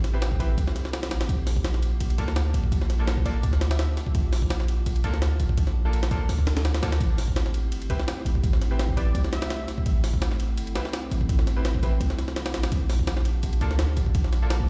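Dark, atmospheric drum and bass in the jungle style at 168 BPM in A phrygian, cut from a longer piece, where a gritty, pitched-up sampler drum kit with a thumpy kick and high-tuned snare sits up front beside a deep, boomy 808-style bass, while a warbling, lo-fi tape-like pad holds chorused chords in the background, short, bright grand piano stabs bounce through dub echo over Am7 and Gm7/Bb, and a punchy, detuned unison lead with vibrato and a filter sweep flickers in briefly at 3.3 and 9.0 seconds, all heard as if played on a big sound system in a bare room with lossy compression artefacts.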